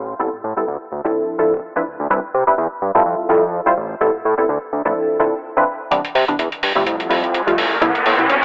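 Filtered disco house in C major at 126 BPM, with a 16th-note swing that gives this short, feel-good excerpt a funky bounce. A fat, detuned sawtooth analog bass sits up front from the start, thick and saturated, shaped by high-pass and low-pass filters. Just after it, a punchy polysynth comp of sawtooth and square waves joins, its dark, plucky tone coloured by chorus, phaser and a low-pass filter as it moves through Am7, Dm7, Cmaj7 and Fmaj7. Filter sweeps run through the opening stretch, and at 5.9 s a build-up begins as a gritty, overdriven, compressed hi-hat enters. An up-front electronic riser arrives at 6.8 s and carries the build-up to the end. The whole mix has a telephone-like colour set inside a lush hall reverb.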